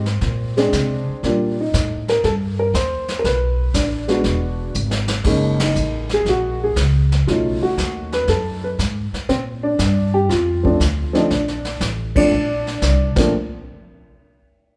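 Swung eighths at 119 BPM in 4/4 drive this relaxed jazz piano trio, with a woody pizzicato upright bass on steel strings and a vintage brush kit adding brushed snare, punchy kick, hi-hat, ride, crash and a short drum fill, plus band accents at 5.5 and 12.1 seconds. A dark, mellow upright piano, slightly detuned and boxy with short sustain, carries the melody over changes such as Bb9, Bm7, Gb69 and Bbmaj7, sitting up front alongside the bass. A moderate recital-hall reverb lends a church-like space with its highs capped at 10.6 kHz, and the trio breaks off at 13.3 seconds.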